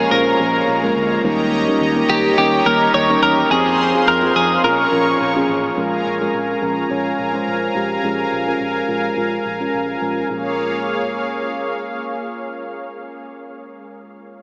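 Urgent and moody, this swung pop excerpt in Bb dorian moves at 106 BPM over Bbm7, Eb7 and Fm chords, led by a clean, compressed twelve-string electric guitar melody with analog delay that drops out at 5.2 seconds, while a crunchy overdriven guitar sits very quietly underneath until 6.3 seconds. A soft, round FM electric piano with chorus and a bold, brassy sawtooth pad with detuning, chorus and tremolo carry the harmony, anchored by a dark, foam-muted fingered electric bass. Everything sits in a dreamy mix soaked in a huge ambient reverb with a small-speaker sound.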